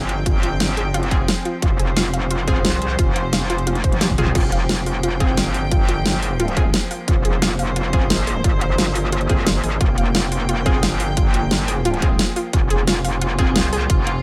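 Mechanical and tense, this dark technical drum and bass cut in F minor runs at 176 BPM, built on a punchy electronic kick and a dubstep drum kit with a huge snare, metallic hats and a drum fill at 3.7 seconds. An aggressive, saturated wobble bass sits up front with chorus and sidechain pumping. A distant, reedy string section holds sustained chords with light vibrato, while a round, detuned analog pluck plays arpeggios and a bold, orchestra-hit-like synth stab with ring modulation and dub echo punctuates from the background in a dry mix.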